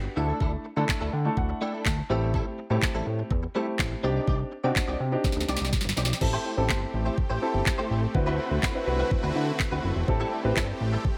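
A dark, mellow baby grand piano with sidechain pumping, a twangy, clean electric guitar riff with ensemble chorus and a fat, sidechained analog bass open this euphoric, carefree dance-pop passage at 124 BPM, joined at 0.4 s by an up-front electronic drum kit of knocking kick, sharp snare, handclaps and crash, with a piano fill early on and a drum fill leading into lush, detuned supersaw pad chords that arrive at 6.2 s, as the harmony moves from Dsus2 through Am7, Cmadd9 and D13 in light reverb.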